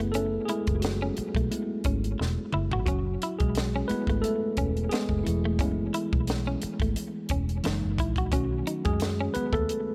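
R&B with a neo-soul lean, this late-night, sultry excerpt sits at 88 BPM with a light 16th-note swing in F# dorian, moving from F#m11 to F#13 at 7.6 seconds and B7 at 8.3 seconds. A worn, slightly out-of-tune tine electric piano, lightly overdriven and heard through built-in speakers, takes the lead up front, while a clean, compressed picked electric guitar adds a second line through analog delay. Underneath, a dark, foam-muted fingered bass gives a round, punchy low end, and a dry compact cocktail kit with a high-tuned snare plays a fill from 2.2 to 2.9 seconds, all in a small, lightly reverberant room.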